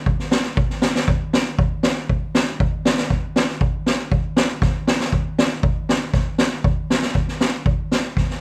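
A straight 2/4 pulse drives this short, festive klezmer excerpt, carried entirely by a street-band drum kit of kick and snare that enters at 0.1 s and plays through to 8.4 s. The kit sits up front with a mid-forward, acoustic small-room character: a high-tuned snare cracks over a boomy kick, and the whole kit is warm with a rolled-off top. A moderate studio ambience gives the soulful groove some air, and the passage moves into a new section at 1.6 s.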